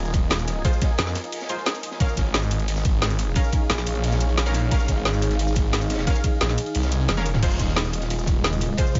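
Dark technical drum and bass with a tense, mechanical mood, heard in a short cut from a longer piece that moves between F minor and B-flat minor. A snarling, growling saw bass sits up front, distorted and compressed with sidechain pumping, while a cloudy, blurred granular pad drifts above it in reverb and pumps along. The beat stacks an overdriven, knocking electronic kick with a layered drum and bass kit of woody snare, bright hats, ride, crash, toms and cabasa in a small room, plus a very quiet, gritty breakbeat kit with a high-tuned snare and rolled-off top. Bold, punchy orchestra-hit-like stabs with a filter pluck come in at 0.6 seconds, trailed by dub echo and reverb. After a drum fill at 7.1 seconds, a swarming, detuned drone with 12-bit sampler grit enters in the background at 8.1 seconds.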